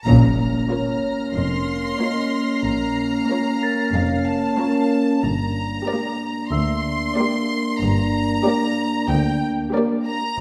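A lush, reverberant scoring-stage sound frames this eerie, tense cinematic excerpt at 93 BPM in straight 4/4, where a huge, dark impact at 0.1 s opens a brief band accent as mellow French horns hold sustained chords up front over cello and double bass, violins carry the vibrato-laden melody from F5 to C6 with a woody, darker violin line and viola beneath, a distant high violin texture ends at 4.9 s, and a bell-like, delicate celesta glints in the background while the harmony moves from Bbm to Gm at 5.2 s.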